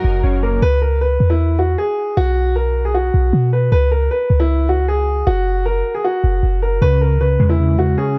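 A boomy, sine-toned 808-style bass sits up front in this eerie, hard-hitting half-time hip hop piece, under a dark, boxy grand piano that carries the melody throughout, while a clean electric guitar with analog chorus and a smooth, bowed string section in the background sound together only in the first 0.6 seconds before the guitar returns at 6.8 seconds, in a dry mix.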